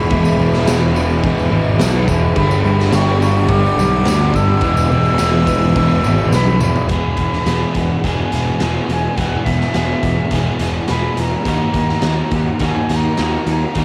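A dreamy, blissful stretch of shoegaze-leaning dream pop rock opens with a wall of guitars, an up-front fuzzed electric bass and a distant, airy flute carrying the melody in a straight tone with a soft attack, its line softened by cassette tape and tape echo. Beneath it sits a layered guitar bed in the background: a dark, thick fuzz guitar with ensemble chorus, a hollow-bodied overdriven semi-hollow guitar washed in reverse reverb, and, for the first 6.9 seconds, a bright, double-tracked cranked stack guitar with spring reverb. An icy, crystalline pad holds sustained chords through that same opening stretch, with a slow attack, chorus and built-in reverb, while a jingly tambourine rattles faintly from a large room in the background. The raw garage drum kit enters at 0.1 seconds with a punchy kick, a high-tuned snare, hi-hat, crash and toms, sounding gritty and saturated in a pumping stone room with a rolled-off top, and a drum fill at 6.3 seconds leads into the second half. 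From there the flute, the two remaining guitars, the bass and drums carry on to the end of this cut from a longer piece, the harmony moving from E through Gmaj7 and back to E before settling on D#m at 11.5 seconds, all with the hazy character of a home cassette recording.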